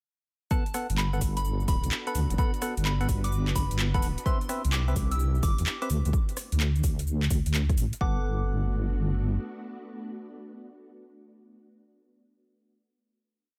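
Soulful and sunny, this short two-step UK garage piece in G major moves at 128 BPM with a swung 16th-note feel, opening on a drop where a dry, punchy, overdriven electronic kick and a layered garage kit of skipping metallic hats, rim clicks, claps and cabasa ride over a deep, dark wobble bass playing a syncopated riff up front with chorus and sidechain pumping. Above them, a hollow, mellow organ stab plays a rhythmic chord riff through chorus, phaser and tape echo, a pure, gentle FM bell repeats a warbling riff melody with chorus and tape echo, and a silky vintage string machine holds sustained pad chords with ensemble chorus and pumping, moving through Gmaj9, Cmaj7 and D7. The drums drop out at about 8.0 seconds, leaving the bell, organ, strings and bass on a final Gmaj9 chord, with the bass stopping at 9.4 seconds and the remaining parts ringing on dry, with little reverb, until 11.5 seconds.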